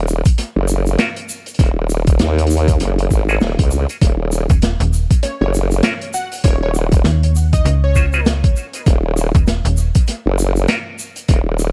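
An echo-heavy small-room mix dusted with vinyl crackle carries this gritty, swaggering glitch hop excerpt at 99 BPM in Eb minor with swung sixteenths, resting on an Ebm7 chord, where a thumpy, pitched-down electronic kick and a sustained sawtooth formant-sweep wobble bass with chorus and tube saturation sit up front beside a dark, rolled-off open jazz kit of hi-hat, rim click and snare with dub echo, a grainy tube shaker, and nasal, hollow auto-wah clav stabs with sidechain pumping, while a snappy, metallic slap-like FM bass joins at 4.5 seconds and a catchy, detuned plucky unison lead with analog chorus sings from 5.2 to 8.3 seconds.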